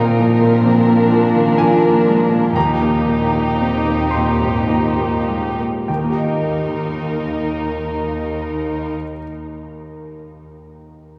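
A tender, uplifting cinematic film score in Eb major drifts in a rubato 3/4 at 49-65 BPM, slowing through its opening 5.9 seconds, as an intimate, up-front baby grand piano with audible action noise carries the accompaniment alongside a veiled, con sordino violin section with vibrato on the second line, a very quiet, ringing harp playing arpeggios and a dark, distant muted cello section on bass, all bathed in a 6.0-second cathedral reverb before the bowed strings stop at 8.9 seconds, the harp fades at 9.8 seconds and the piano rings on to 11.2 seconds.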